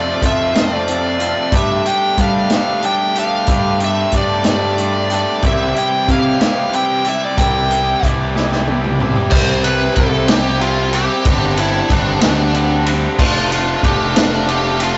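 A bluesy, distorted lead guitar sings up front over a bright, overdriven rhythm guitar riff, a clean, twangy fingered guitar tucked in the background until 9.3 seconds, and a punchy fuzz bass in this upbeat yet wistful indie rock excerpt in 6/8 at 62 BPM, with a vintage acoustic drum kit entering at 0.2 seconds and playing a fill from 8.4 seconds as the chords move from F through Gsus2 and C to Gsus4 and Dm/F, the mix carrying a rough, tube-saturated rehearsal-room sound with a small room's reverb.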